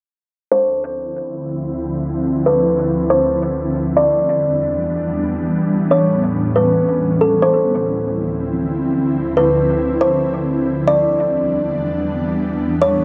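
A kalimba opens at 0.5 seconds with a soft, woody melody, its fingertip plucks ringing through a low-pass filter and an analog delay. At 1.1 seconds an ethereal, airy pad enters with sustained chords, its detuned sawtooth and triangle layers thickened by ensemble chorus and its own reverb. This short cut from a longer hip hop piece moves at 139 BPM in a half-time 4/4 feel, in D dorian, with a melancholic, ethereal mood. The harmony moves from Dm9 to Em7, A9, back to Dm9 and then Em7, while a filter sweep runs from 0.5 seconds to the close at 13.0 seconds. Both parts sit up front in an echo-heavy mix with a moderate plate reverb, giving the hollow, mellow tones a lingering, spacious glow.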